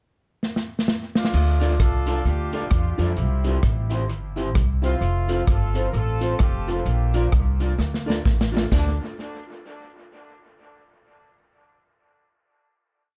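Dark, dry production frames this short, energetic and mischievous ska piece in D minor at 130 BPM with a swung feel, where a vintage drum kit opens with a fill at 0.4 seconds and drives a side-stick ska beat under a thumpy, woody walking upright bass with slides, while a slightly broken-up electric guitar and a boxy upright piano chop the off-beats in the background and a mellow, distant horn section plays tight call phrases, with dub echo trailing the drums, guitar, piano and horns, until the piece closes on a final D chord at 8.7 seconds.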